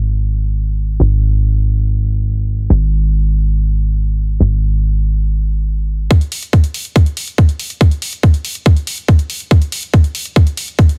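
Driving and hypnotic, this psychedelic trance excerpt at 141 BPM opens with a punchy, wave-folded analog bass alone, sitting low around G#1 with a fast-attack filter pluck, until at 6.1 seconds it gives way to a tight, up-front electronic kick and a quieter overdriven hi-hat with studio ambience for a build-up, all dry and squeezed into a heavily compressed radio sound.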